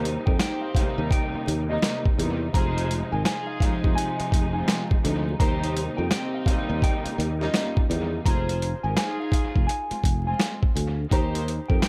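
A gritty, pitched-down boom-bap drum kit with a thumpy kick and high-tuned snare sits up front in this moody F minor hip-hop excerpt at 84 BPM, swung on the sixteenths and alternating between Cm7/Eb and Fm7. A growly, bright fretless bass sustains underneath, while a lush bowed string section with vibrato and portamento carries the accompaniment through cassette-tape coloring until it drops out at 8.2 s. A clean, fingered electric guitar plays a mellow high melody, and soft-attack, floating string stabs drift through analog delay, all set in an echo-heavy digital ambience with vinyl crackle.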